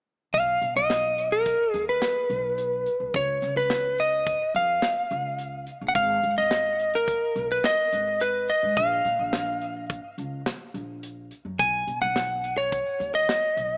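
Bright and driving, this progressive instrumental excerpt moves in an uneven 5/4 with a straight feel, opening on a chord-free passage before moving through C#, G#5, A#5 and Badd9. Up front, a lightly driven electric lead guitar carries the melody with a dark, slightly broken-up, compressed tone and digital delay, while a woody, thumpy pizzicato upright bass on gut strings sits low beneath it. An acoustic drum kit with a tight kick, medium-tuned snare and hi-hat keeps time in a small room, and the whole has the rough, small-speaker sound of a home demo touched with light reverb.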